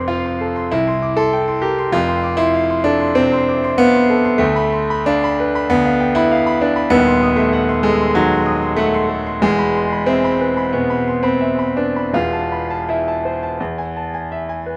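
A bright concert grand piano carries this stormy, bittersweet romantic character piece alone, spanning from deep bass notes up into a brilliant treble at a flexible, rubato pace of about 81-99 BPM in 4/4, tuned slightly low to A4 = 437 Hz. The harmony darkens from F through a half-diminished chord and a diminished seventh before settling around E and A minor. Close, detailed microphones keep the piano up front and natural, set in a moderate recital hall reverb of 1.7 s, in a short passage cut from a longer work.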